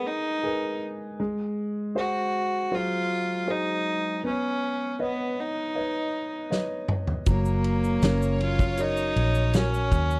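In a straight 4/4 pulse, this tender, hopeful pop ballad fragment opens with a solo bowed violin, nasal and earthy with light vibrato, carrying the melody over an intimate concert grand piano whose deep bass and audible action noise sit up front. A roomy, loose indie drum kit with a punchy kick and rolled-off top enters with a fill at 6.5 seconds. At 7.3 seconds a round, foam-muted electric bass, a warm sul tasto violin section holding a high second line, and a grainy, bright tube shaker in the background fill out the small room.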